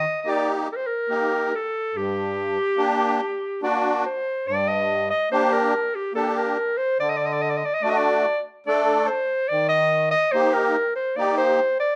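A breathy clarinet carries the melody up front, its clear subtone tone colored by light vibrato, a jazz-inflected phrasing and a plate reverb, while a reedy musette accordion with shimmering wet tuning supplies the accompaniment until 11.6 s. This festive yet soulful klezmer passage moves at 71 BPM in 3/4 and G harmonic minor, with harmony shifting through Eb, Gm and D. Heard in a moderate studio room, the short section is cut from a longer piece and moves from its opening theme into a second section at 4.5 s.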